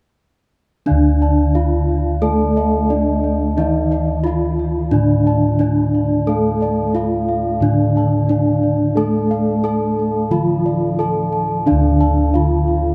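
Round, beating bossed gongs carry a dry bass line in this stately, hypnotic gamelan excerpt, while an up-front bronze metallophone struck with a wooden mallet rings out the melody with the shimmering beats of paired tuning, a second metallophone with a vintage, band-limited tone plays the accompaniment, and dark, smooth bossed gongs sounded with padded beaters join a full, close-miked metallophone in arpeggios, the ensemble set in a vast, echoing space with a huge reverb.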